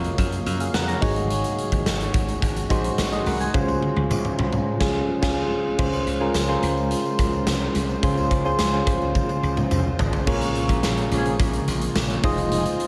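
Drenched in a lush hall reverb with a big arena sound, this dramatic, nostalgic 1980s-style pop excerpt at 107 BPM sets soft, round electric-piano-like synth keys with chorus and slapback echo over a blurred, evolving granular cloud pad, a bright, punchy slap bass, a natural, up-front huge arena drum kit with drum fills from 3.5 and 9.2 seconds, and a jingly, very quiet tambourine, before dark, brassy synth brass stabs enter at 10.3 seconds.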